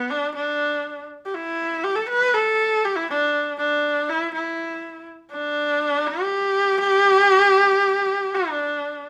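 A single bowed horsehead fiddle opens this Mongolian traditional fragment, its horsehair strings sounding bright, husky and focused as it carries the melody up front with vibrato and portamento. The mood feels vast and galloping across the 9.1 seconds, and the lone player sits in a moderate studio reverb that suggests a live room.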